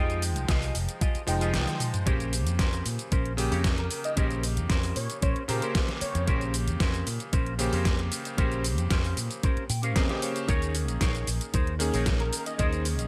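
A punchy, tube-saturated fingered bass with an envelope filter and sidechain pumping drives this cosmic, groovy nu-disco excerpt at 114 BPM in Bb dorian, under an overdriven, knocking electronic kick and a layered pop kit with a deep snare, hi-hat, shaker and toms, while a twangy, chorused guitar riff through an envelope filter and a clangy, cutting vintage electric grand piano with slapback echo fill out the dry mix; the kick drops out at 1.5 s for a drum fill, a thick, detuned unison lead with cassette-tape character and analog delay enters at 3.8 s, and a clean guitar fill arrives at 9.4 s as the chords move from Fm9 to Bbm69 and Eb7sus4.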